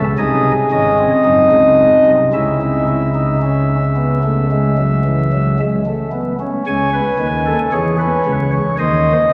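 Drenched in a wet cathedral reverb with a 4.5-second decay, this short excerpt also carries a layer of vinyl crackle that gives it an aged, found-record quality. It is a baroque-style four-part fugue in C# minor for solo pipe organ, moving at a stately 56 BPM in straight 4/4, tuned to A4 = 438 Hz. The organ sits up front on soft flute stops with a baroque voicing, its tone warm, and each note opens with a breathy chiff. The part spans from F#1 up to G#5, and despite the unhurried pace the mood is joyful and lively. The harmony moves from G#7 into C#m early on, the music shifts into a new section at 6.7 seconds, and it closes on a rootless G#/D# chord at 8.8 seconds, as if the music is continuing past the cut.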